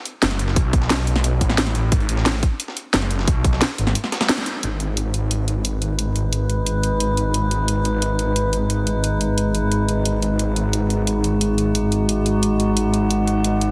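A straight 4/4 groove at 177 BPM drives this dark, futuristic piece of technical drum and bass in G# Phrygian, cut from a longer track. The main overdriven drum kit sits up front with a cracking snare and bright hi-hats, joined early by a tight, overdriven electronic kick that drops out at 3.5 seconds. A very quiet, gritty sampler-style breakbeat kit adds a medium-tuned snare and hi-hats beneath it during the opening. Underneath, a snarling saw bass growls low in the register, detuned and distorted, with sidechain pumping and a moving notch in its tone. After a short break and a band accent at 4.3 seconds, an eerie, metallic FM drone enters at 5.6 seconds, chorused and pumping, with a filter sweep running through it. The mix is heavily compressed with a radio-like edge, set in a lush hall reverb.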